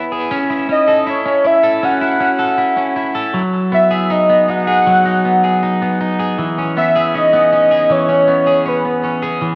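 Dream pop with an ethereal, melancholic mood, this short cut from a longer piece unfolds at an unhurried pace in a straight four-beat feel. A velvety synth lead carries the melody, its detuned sawtooth tone rounded out by a sub octave, with a fast attack, sustained notes, vibrato, chorus and delay. Beneath it, a bright, clean electric guitar plays picked arpeggios up front, touched with subtle chorus and delay, and continues briefly after the lead stops at 9.2 seconds, closing at 9.6 seconds. The harmony moves from F#m7 to G#m7, then shifts to C#m7 as a new section begins at 6.4 seconds. A long, wet stage reverb with a digital ambience surrounds the sound, and worn cassette tape adds a warbly pitch drift that deepens the ethereal atmosphere.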